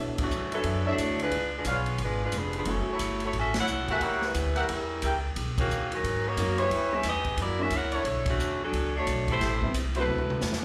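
Brassy and sultry, this big band swing passage in B minor moves at a brisk 178 BPM, with the clear saxophone section carrying the melody up front while a mellow trumpet section adds stabs, both played with light vibrato and touched by slapback echo. A woody, thumpy pizzicato upright bass anchors the low end, the swinging drum kit brings dark cymbals, a punchy kick and a medium-tuned snare, and a warm baby grand piano comps in two stretches, the second starting at 6.4 seconds. The whole band sounds like a live gig heard through the venue's PA with club reverb, hitting ensemble accents along the way before a drum fill at 10.1 seconds closes this cut from a longer piece.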